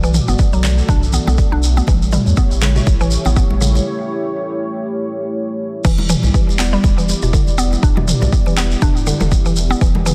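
A dense, heavily limited modern master with digital ambience carries this spiritual, warm afro house excerpt at 121 BPM in E dorian with a swung 16th feel, built on an up-front, tape-tinged deep electronic kick, a round sine sub bass, and a dark, detuned sawtooth analog pad with chorus, the bass and pad both pumping to the sidechain, while a woody, warbling FM mallet-like synth pluck with chorus, delay and pumping arpeggiates under a filter sweep through the opening section, bright thin-skinned congas sit in the background beside a grainy shekere, and a layered deep house drum kit with crash, handclaps and toms drops out early, leaving a break at 3.9 s before it returns for the drop at 5.8 s as the Bm7 and A7 chords give way to Em7.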